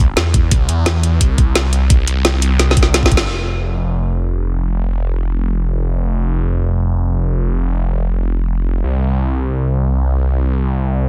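A dense, heavily limited, dry mix opens this tense, futuristic snippet of dark technical drum and bass in free time. A swirling, thick, detuned saw bass, bright and saturated with phaser and tube warmth, sustains up front in a low register. It is joined at 0.2 seconds by a layered electronic kit with a woody snare and metallic hats, and at 0.3 seconds by a knocking electronic kick, all given a small-room character. A drum fill follows from 2.6 seconds and a band accent lands at 3.2 seconds before the bass carries on alone.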